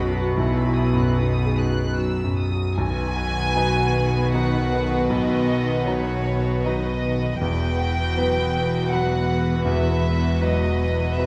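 Cinematic strings and piano in 3/4 with a rubato feel, tender and hopeful in mood, cut from a longer piece. A rich, intimate violin section carries the high melody with light vibrato and soft sul tasto bowing over a floating, smooth-topped second violin line. A clear, vintage-toned grand piano with short sustain accompanies beside a dark viola section in the background, while a warm cello section and a pure double bass section hold the low end. The whole ensemble plays throughout in a wet scoring-stage reverb, and the harmony moves from B to Emadd9 at 7.4 seconds.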